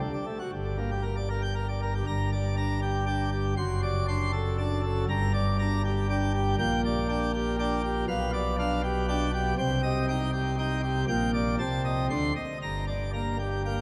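A brilliant pipe organ plenum, full of mixtures with a baroque chiff and placed up front, plays alone throughout this majestic, stormy classical toccata in G minor at 119 BPM in 3/4, spanning F#1 to C6 over harmony that opens on D, settles into G minor, and passes through C minor before returning home, all within a long, wet church reverb of 3.8 seconds in a 13.8-second passage cut from a longer piece.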